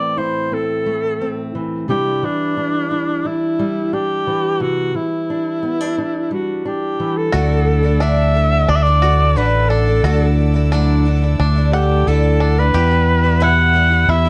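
A warm, vibrato-laden alto saxophone carries the melody from start to finish in this bittersweet, wistful folk excerpt at 88 BPM, first over a dark fingerpicked steel-string guitar, then at 7.3 seconds joined by a growly fingered electric bass, a woody, shimmering twelve-string guitar, a twangy banjo with tape echo playing arpeggios, and a floating sul tasto chamber string section holding soft chords in the background, all in a small, lightly reverberant room.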